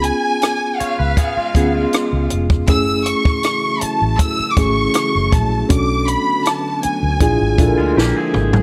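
Romantic and lush, this 1970s-style soul passage sets an expressive, bowed violin section up front over a reedy electric piano with fast tremolo, a dark, round fingered bass and a punchy, dry cocktail drum kit with a high-tuned snare. A twangy, slightly broken-up electric guitar through a small old amp plays a riff from 0.8 to 2.7 seconds and returns at 7.8 seconds. At 2.7 seconds a silky string machine with ensemble chorus enters to hold soft, sustained chords in the background. The harmony moves from C#7 through F#m9 and Bm7 to Bb7#11, and a drum fill at 8.0 seconds closes the passage in a small room with light reverb.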